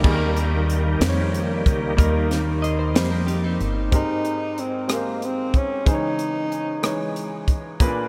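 Uplifting and hopeful, this slow gospel passage in 6/8 at 62 BPM, cut from a longer piece, opens with a shouting, lightly overdriven tonewheel organ solo through a fast rotary speaker. Behind it sit an intimate baby grand piano, a very quiet French horn section, woody pizzicato upright bass, and a crisp fusion drum kit with a punchy kick and high-tuned snare. A clean, picked electric guitar adds a second line with lush chorus and tape echo from 2.6 s. At 4.0 s a breathy tenor saxophone takes the melody up front with subtone, scooped notes and vibrato, as the harmony moves from Eb to Abmaj9 and Dbmadd9, all in a dreamy mix soaked in huge ambient reverb.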